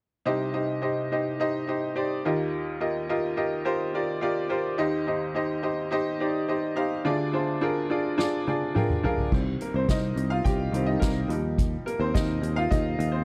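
Earnest and driving, this piano-driven pop passage in straight 4/4, cut from a longer piece, opens with a bright upright piano playing alone, its worn, woody and slightly detuned tone sitting up front as it moves through C minor, Eb add9, Cm over Eb and D diminished. At 8.2 seconds the piano and a soft-mallet drum kit both play fills, the mallets giving dark cymbals, a fat snare, a boomy kick and toms a soft, natural character. At 9.3 seconds the piano takes a solo over a return to C minor and Eb add9, while a picked electric bass enters low and growly, direct and up front alongside the drums. The dry, close sound of a 1970s-style studio keeps every part present and immediate.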